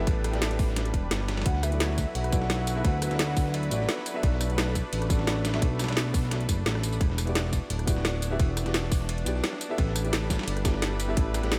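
A light reverb glazes this uplifting, lush liquid drum and bass excerpt in D major at 173 BPM, where a smooth, saturated synth bass sits up front beside a tight electronic kick, while a garage kit with woody snare and metallic hats and a gritty, overdriven sampler-style soul kit tucked in the background fill out the drums. A soft, felt-muted upright piano with audible action noise and tape echo plays accompaniment over a thick, warbling unison pad that pumps against the sidechain, moving through chords from A9sus4 to D69, Bm7 and Em9. From 1.5 to 4.7 seconds a hollow, clarinet-like synth lead adds a dark, chorused melody in the background.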